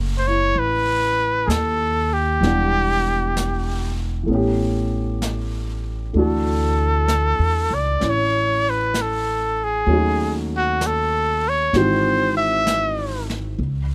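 Closely miked and nearly dry, this melancholic, smoky swung jazz ballad excerpt puts a bright, vibrato-tinged trumpet up front on the solo melody, over an intimate baby grand piano with audible action noise and short sustain, a woody, thumpy pizzicato upright bass, and an airy, polished brush kit sitting low in the mix on snare and hi-hat, as the harmony moves from F#m7 through Dmaj9 to G#7b13.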